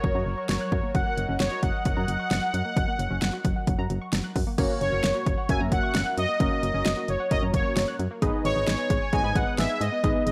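Synth-pop at 132 BPM, nocturnal and melancholic, this excerpt from a longer piece is led by a bold, brassy, detuned analog synth brass melody up front, coloured with chorus, tape echo and vibrato. Underneath run a lo-fi, warbling pluck playing arpeggios through chorus and tape echo, a round, punchy FM bass, and an overdriven deep house drum kit with a punchy kick and fat snare; a swirling phased pad holds chords until 4.5 seconds, when mellow sawtooth keys with chorus take over the accompaniment at 4.6 seconds. The harmony moves from F# to G#m at 8.2 seconds, and the dry, gritty recording carries only light reverb.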